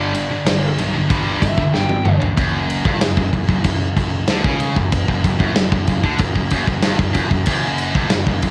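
Heavy metal with a relentless, epic mood, this excerpt opens with a brief lead guitar solo through a small cranked amp, overdriven and tape-worn, ringing out over a bright, scooped high-gain guitar riff up front and a second, very quiet scooped riff guitar that drops out at 2.4 seconds. A growly fuzz bass sits in the background while a big rock drum kit, with a punchy kick, medium-tuned snare, ride cymbal and toms, plays up front in a big room and rolls through a fill before the lead stops. From 2.4 seconds the riff carries on with bass and drums, all under light reverb on a home cassette recording.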